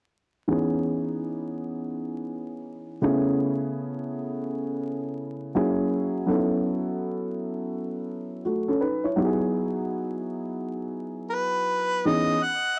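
A smoky, nocturnal hip hop cut with a swung sixteenth-note feel, built on a dark, woody upright piano that sounds worn, slightly detuned and vintage, sitting up front as it moves through ninth chords from 0.5 to 12.3 seconds. At 11.3 seconds a jazz-style harmonica solo enters up front, its tone warm with a smooth top, light vibrato, scooped notes and tongue slaps. The gritty hardware recording carries vinyl crackle and a moderate small-room reverb.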